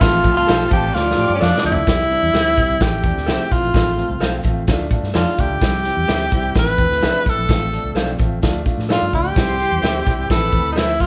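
A straight 4/4 groove at 128 BPM drives this uplifting, joyful 1960s-style soul piece in C major, cut from a longer work, with an up-front vintage drum kit of punchy kick and dark cymbals playing a fill from 0.9 to 1.9 s, a round, foam-muted electric bass, and a jingly tambourine heard only at the start and again from 9.4 s. A bright, pop-style tenor saxophone with vibrato carries the melody over a cycling F/A, Dm, C, Am progression, while lush, woody bowed strings add a second line in the opening and closing moments. Behind them sit an intimate grand piano with audible action noise, slightly broken-up lo-fi guitar stabs, and a very quiet, flute-like tonewheel organ through a rotary speaker, all in a live-room sound with moderate studio reverb and vinyl crackle.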